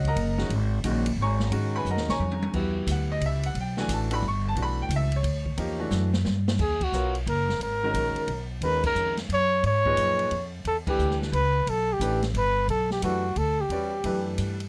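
Modal jazz in a swinging 3/4 at 177 BPM, searching and cool, with a clear, polished upright piano sustaining G#m11 and Em11 harmonies over a thumpy, gut-strung pizzicato upright bass and an open acoustic drum kit with dark cymbals and a boomy kick. Drum fills arrive at 1.9 and 5.9 seconds in the opening, and at 6.6 s a breathy trumpet with light vibrato takes the lead up front, while the band hits accents at 6.8, 8.8 and 10.8 seconds. The dry sound frames this passage cut from a longer piece.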